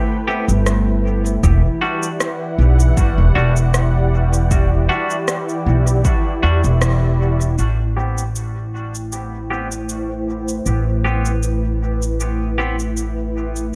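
Light reverb gives this hazy, meditative ambient dub excerpt a gentle sense of space, moving at 78 BPM in 4/4 with a slight sixteenth-note swing in A dorian. A smooth, detuned sawtooth analog pad with a slow attack and chorus holds sustained chords from Am9 to Em7, while a bright, clean semi-hollow electric guitar adds compressed, picked stabs roughened by vintage 12-bit sampler grit, a low-pass filter and dub echo. Up front, a woody pizzicato upright bass on steel strings anchors the low end, joined by tape-toned electronic cabasa and rim click that were re-recorded in a large room and carry their own dub echo. A punchy, layered, overdriven electronic kick drives the groove from 1.4 to 6.2 seconds, and a brief band accent arrives near the end of the opening section. At 7.6 seconds the harmony returns to Am9 as filter sweeps move across both the pad and the guitar, deepening the drifting, dreamlike atmosphere.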